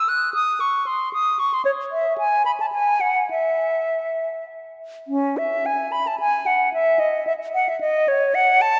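A classical, baroque-style fantasia for unaccompanied flute, this short cut from a longer piece has a grave, solemn mood, moving in 3/4 at a rubato pace of roughly 98-115 BPM. The solo concert flute sounds airy and close-miked, placed up front with soft attacks, expressive vibrato and a range from C#4 to F#6 across its 8.8 seconds. A wet church reverb with a 3.0-second decay surrounds the line, as one phrase at 5.1 seconds gives way to a restatement of the same material.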